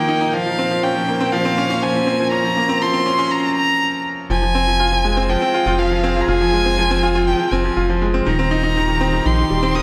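Piano and strings electronica in F minor at 121 BPM in 4/4, this hypnotic, cinematic excerpt is cut from a longer piece. A bright grand piano plays an up-front riff with short sustain, while a solo violin carries the melody high above with vibrato and expressive portamento, its tone warm yet set at a distance. Behind them, a chamber string section holds soft-attack chords played sul tasto with light vibrato, and a filter sweep runs across those strings through the build-up from 0.0 to 4.3 seconds. At 4.3 seconds the drop arrives as a round analog bass enters, deep and dark with a fast attack and a wave-folded edge, while the harmony moves from Bbmadd9 to Fm and then Cm/Eb. A wet recital-hall reverb with a 1.5-second tail gives the whole piece a spacious, polished sheen.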